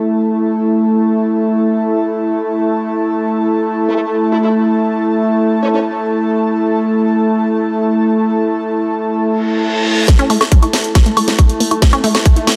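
Intense and psychedelic, this psychedelic trance passage opens on a morphing wavetable pad and a soft, breathy pad in a lush hall, with a formant-sweep wobble bass surfacing briefly at 3.9 s, before a reverse cymbal and riser arrive at 9.4 s and a build-up at 10.1 s brings in a bright, detuned unison pluck riff with vintage tape warble, a tight, up-front electronic kick, and a techno kit of cracking snare, filtered hi-hat and woodblock playing a drum fill.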